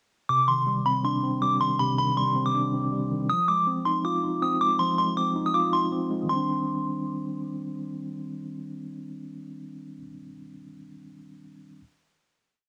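Dark, hard-hitting trap hip hop in C minor at 160 BPM with a half-time feel, this whole piece pairs a delicate, tinkling FM synth tine bell, up front with chorus and phaser, looping a sampled-style melody until 7.4 seconds, with a mellow, clean tine electric piano heard as if through built-in speakers, whose repeated rising and falling eighth-note arpeggio moves through Cmadd9 and Fm7 before settling on a final Cmadd9 chord at 6.3 seconds and ringing on to 11.8 seconds, all under a lo-fi cassette haze with light reverb and digital ambience.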